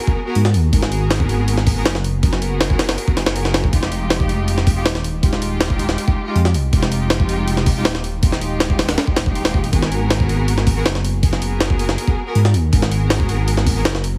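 Heavily compressed, radio-like sound with vinyl crackle and a light reverb gives this short cut from a longer drum and bass piece a dark, nostalgic haze. A rich, lush string section holds bowed, sustained chords with smooth vibrato, moving from Abm9 to Fm9 at 3.7 seconds and back to Abm9 at 9.7 seconds. Up front, a gritty, pitched-up jungle sampler-style kit drives the straight groove with a thumpy kick, a high-tuned snare and hi-hat. Beneath it, a deep, rumbling detuned saw bass, roughened by tube saturation, sustains with a beating, dark weight. The strings stop at 13.8 seconds while drums and bass carry on briefly to the end.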